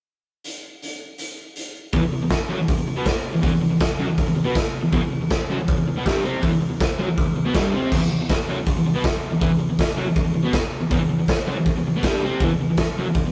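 Menacing and raw, this garage rock excerpt drives along at 160 BPM in a straight 4/4, centred on E minor. A raw acoustic drum kit opens alone at 0.4 seconds, its boomy kick, medium-tuned snare, hi-hat and crash cymbal sitting up front in a bright stone room that pumps, with a gritty, saturated edge. At 1.9 seconds a crunchy overdriven electric guitar enters with a picked, double-tracked riff ranging from E2 to C4, placed up front beside the drums. The guitar carries a warm, distorted bite that gives the riff its threatening weight. The whole piece has the rough feel of a rehearsal-room recording, with tube saturation and light reverb, and it is cut from a longer performance.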